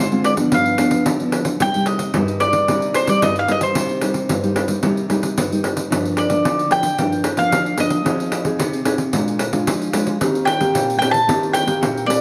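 A bowl-back mandolin, its picked double strings carrying the melody up front, opens alongside a thumb-plucked classical nylon-string guitar with fresh strings and audible finger squeak, joined at 0.1 s by a jingly pandeiro, in a bittersweet, nostalgic samba and choro excerpt at 111 BPM in straight 4/4 that moves from C minor to G minor at 5.9 s, all set in a large, reverberant studio space.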